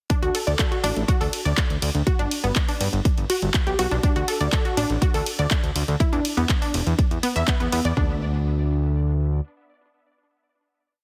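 This short, expansive and euphoric progressive house piece in D major at 122 BPM opens at 0.1 s straight into the drop: a lush, detuned unison pluck of sawtooth and sine runs a 32-step arpeggiated sequence through tape echo and sidechain pumping. Beneath it, a punchy four-on-the-floor kick with floor toms sits up front, with programmed closed and open hats, ride and a clap backbeat, while a fat, thick sawtooth bass gallops in sixteenth notes under a filter sweep and its own pumping over chords moving D5, G, D5 and E5. At 8.0 s the drop gives way to a closing stretch where the bass rings on to 9.4 s, all bathed in light reverb and a heavily compressed, radio-like sound.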